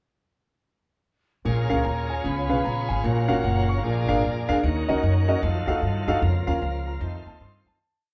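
The grand piano provides accompaniment in this short uptempo gospel piece in Bb minor, its intimate, boxy tone up front with audible action noise and long sustain as it plays off-beat drop2 chords and short fills. It runs at 151 BPM in 4/4 with swung eighths, and the mood is fervent yet solemn. Beneath it, a woody, thumpy upright bass plays pizzicato on steel strings, walking and running with slides and chromatic approach notes. A shouting tonewheel organ holds a clean, full pad with vibrato, key click and a slow rotary speaker, while a small flute group adds breathy, hollow sustained chords with vibrato and rolled-off highs. The whole band plays live in one large studio room with moderate reverb; the music is a breakdown from 1.4 seconds, moving through chords such as Bbm7, Gbmaj7 and F7b9 before a fade-out from 6.2 to 7.8 seconds.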